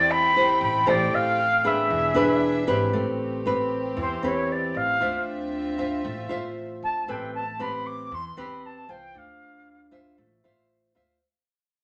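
A wistful, intimate bossa nova in A minor at 116 BPM opens with an airy jazz flute melody over fingerpicked nylon-string guitar, woody pizzicato upright bass and a gut-string chamber violin section holding reedy bowed chords until 7.1 s, moving from Am7 and E7 into Am9 and Dm9 as the flute takes a crisp, expressive solo from 2.9 s through a fade-out, all in a wet studio reverb.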